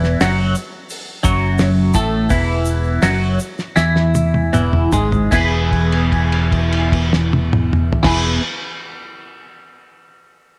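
A bright, twangy twelve-string electric guitar with a phaser leads this hazy, trippy psychedelic rock passage, its clean, picked, compressed riff sitting up front from the first moment. Beneath it, a fingered electric bass gives a warm, amped low end. The cloth-damped drum kit sounds dry, dark and thuddy, with a fat snare, a tight kick, dark cymbals and a rolled-off top, and it too sits close. In the background, a grainy egg shaker ticks along until 5.7 seconds. The groove slows down through its opening stretch, and a drum fill begins at 3.8 seconds, leading to a new section at 5.3 seconds where a held note rings out nearly to the end. A light studio reverb frames the whole cut, which is taken from a longer piece.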